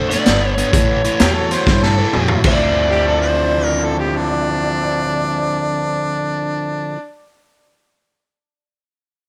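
Electric blues shuffle with a smoky, soulful mood, heard in a short cut from a longer piece. A dark, overdriven lead guitar through a small cranked amp carries the melody high in its range, with plate reverb, while a bright, biting overdriven guitar plays the riff up front, picked. A woody upright bass plucks the low line beneath them, and a raw garage drum kit with a boomy kick, medium-tuned snare and gritty, saturated, rolled-off character sits up front in a small room, playing only until 2.5 seconds and closing its part with a fill. A clear harmonica enters at 1.2 seconds as a jazz-style solo second line, with light vibrato, scooped notes and a smooth top, colored by overdrive and plate reverb. The harmony moves from a minor chord to a dominant seventh and back to a minor ninth, all in a light reverb.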